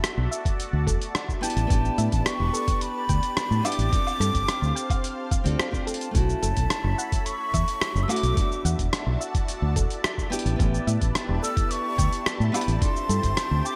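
A relaxed, straight 4/4 groove at 108 BPM drives this wistful sunset chillout excerpt, with a gritty, tape-warm sampler-style kit of hi-hat, rim click, shaker and woodblock under gated reverb, a thumpy electronic kick and an up-front, foam-muted fingered electric bass. A fingerpicked nylon-string guitar, a thick detuned unison pad with chorus and phaser, and a soft, round pluck playing arpeggios in the background drift through suspended ninth chords. A breathy, mellow concert flute carries the melody from 1.4 seconds, and at 6.7 seconds a very quiet, airy wind-like noise texture joins, all in a bright 1980s-style digital sound with light reverb.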